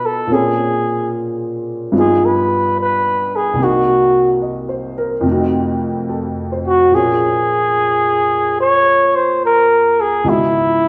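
A breathy, whispered flugelhorn with light vibrato and scooped notes takes the solo from 0.0 to 6.9 seconds over a warm baby grand piano in this melancholic, smoky swung jazz excerpt, its intimate, vintage tone set up front in a large studio's lush reverb that places the pair further back in the room.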